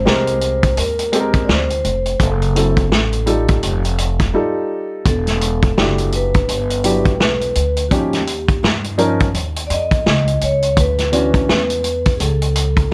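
A ringing, metallic vibraphone opens this mellow, nocturnal jazz-hop fragment, struck with medium mallets and its motor off as it carries the melody at 84 BPM in 4/4 with a lazy swung sixteenth feel. A dark baby grand piano enters almost at once with boxy, intimate accompaniment, its short sustain softened by plate reverb and its action noise audible up close. Beneath it, a pizzicato upright bass with gut strings gives a woody, thumpy low end, while a vintage kit of kick, snare and hi-hat sits mid-forward with a punchy kick, a medium-tuned snare and a rolled-off top. The harmony drifts through lush extended chords, from G#maj9 down to Dmaj9, and the music drops into a brief silence from 4.3 to 5.1 seconds before resuming. The piano falls away at 11.6 seconds, and vibraphone, bass and drums close out the passage in a light reverb.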